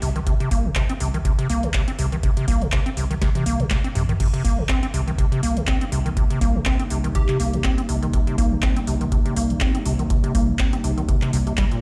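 A raw, gritty acid house excerpt that sounds as if it were played on a big sound system in a bare room, with a large studio reverb around the mix. At 122 BPM in 4/4 with a light swing on the sixteenths, it sits on a C minor seventh chord while a squelchy, resonant square-wave acid bass riff runs up front from the start, overdriven and touched with subtle chorus and tape echo as a filter sweep moves across it throughout. Beneath it, a thick, saturated sub bass pumps with the sidechain alongside the deep, overdriven electronic kick, which enters at 0.3 seconds. A booming analog drum machine supplies crisp snare, handclaps, metallic hats, toms and crash, with a drum fill from 3.2 to 4.2 seconds. At 4.9 seconds a warbling, nostalgic pad of detuned, lo-fi chords drifts in with chorus and reverb, pumping with the sidechain, and a brief plucky unison lead note with phaser and tape echo flickers in the background at 7.2 seconds.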